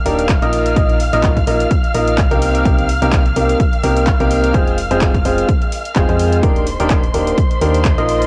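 A bright, woody upright piano sits up front with a slightly detuned, worn riff carrying analog delay, in a euphoric, feel-good piano house excerpt at 127 BPM in Eb major with swung 16ths, moving through Ebmaj7, Bbsus4, Cm7 and Fm. Beneath it, a round FM bass and a dark, lush studio violin section holding sustained chords share the piano's sidechain pumping, while a warbly, nostalgic tape-like pad lingers barely audible. A punchy analog drum machine with handclaps and hi-hat starts at 0.1 s, and an electronic kick drum joins it from 0.3 s to 8.0 s. Both carry cassette tape coloring like the piano and violins, all set in digital ambience with a homespun cassette character.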